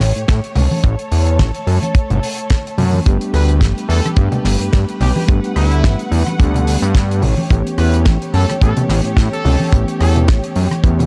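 Nu-disco with a feel-good, groovy lean at 108 BPM, swung on the sixteenths, built on a fat, detuned sawtooth analog bass with tube saturation and a filter sweep sitting up front beside a tight, dry kick. A damped 70s kit with a fat snare, rim click and hi-hat, plus vintage, band-limited congas in the background, carries the groove while lush bowed strings hold sustained chords through 12-bit sampler grit and sidechain pumping. From 3.1 seconds a reedy electric piano with fast tremolo joins the accompaniment over the move from A7 to Gadd9, and from 3.3 seconds a brilliant trumpet section with tape echo states the melody, all in a dry, gritty mix with transformer saturation, cut from a longer piece.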